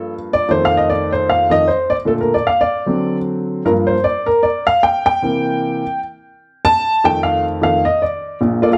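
Jubilant and uplifting, this short gospel excerpt features a lone upright piano playing with a swung eighth-note feel across a span from Bb1 to A5. The changes move from F7 through Bbmaj7, D7, Gm7 and C7 before landing back on F7 at 6.8 seconds. The piano sits up front with a woody, boxy, intimate tone, long sustain and audible action noise, framed by a moderate large-studio reverb.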